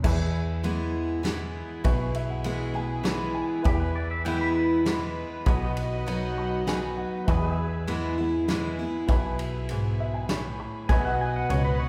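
Heartfelt and nostalgic, this short cut from a longer honky-tonk and classic country piece sways in 3/4 at 99 BPM in E major, moving between E and B chords. A bright, full-bodied picked steel-string acoustic guitar sits up front with a natural country drum kit, whose fat snare and punchy kick carry the waltz alongside crash and ride cymbals. Underneath, a plucky analog bass with a sawtooth, filter-plucked attack gives the low end a punchy, funky bounce. A woody upright piano, intimate and full of audible action noise, drops in fills at 1.8, 6.1 and 9.7 seconds, while a pedal steel guitar and a reedy, gut-string violin section hold sustained chords in the background, the steel played with fingerpicks and slide and the violins carrying light vibrato. A second, twangy pedal steel line steps forward with volume swells from 3.7 to 5.7 seconds and again near the close. The whole ensemble sits in a wet recital-hall reverb that suggests a church or concert hall.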